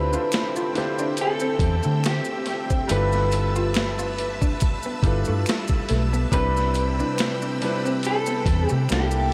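A round, punchy foam-muted electric bass sits up front in this sultry, late-night R&B and neo-soul excerpt at 70 BPM with a light 16th-note swing. It is joined by a gritty, thumpy boom bap sampler-style drum kit, and a slightly broken-up, lo-fi electric guitar carries the melody through lush chorus and diffuse delay. A clear concert grand piano with long sustain, shimmering sawtooth string-machine violins holding chords, a dark hollow-body jazz guitar in the background, and very quiet maracas and finger snaps fill out the arrangement, all set in a dreamy, reverb-soaked mix over Dm11, G13 and Cmaj7.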